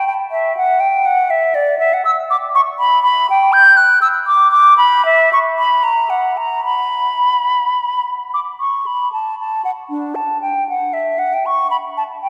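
A classical, baroque-style fantasia for unaccompanied flute in B minor, this short excerpt cut from a longer piece moves at a flowing, dance-like lilt in 6/8, its dotted-quarter pulse hovering between 69 and 84 BPM with free rubato. The concert flute plays alone from 0.0 to 12.3 seconds, ranging from D4 up to G6, its tone pure and hollow, touched with vibrato and clearly tongued notes. It sits up front in the sound, while a wet cathedral reverb with a 4.6-second decay lets each phrase linger in a vast, resonant space. The opening section runs to 8.3 seconds, and then that material returns to carry the music through to the cut. The performance is tuned slightly below standard pitch, at A4 = 439 Hz.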